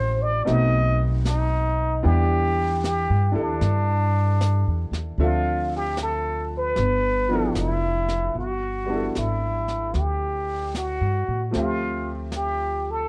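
Swung eighths at a slow 76 BPM in 4/4 carry this romantic, intimate jazz ballad excerpt, with a vintage brush drum kit of brushed snare and hi-hat entering at 0.5 s, soft and rolled-off in a small room. Up front, a woody, thumpy pizzicato upright bass on gut strings sits darkest and loudest, while a bright upright piano accompanies with brilliant tone and audible action noise. A plunger-muted trumpet sings the melody with a wah-wah voice and slapback echo, settling into G major from 8.4 s in a dry, close 1970s-style studio sound.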